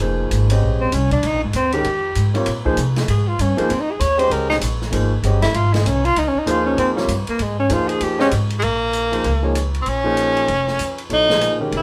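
A tenor saxophone carries this cool, hypnotic modal jazz excerpt, first as a breathy, subtoned second line from 0.8 s, then, from 8.6 s, taking the melody with an edgy, punchy, forceful tone carrying vibrato; both are up front. The music swings at 195 BPM in 4/4 in Bb dorian, tuned to A4 = 435 Hz, and moves from Bbm9 to Dbadd9 before returning to Bbm9 as the second section begins. A grand piano accompanies with an intimate, long-sustaining sound in which the action noise can be heard. Pizzicato upright bass on steel strings sits up front with a woody tone, while an open acoustic drum kit plays hi-hat, ride, snare and kick, with dark cymbals and a boomy kick drum. The band plays live together in a small room, with moderate reverb giving the whole a close, natural feel.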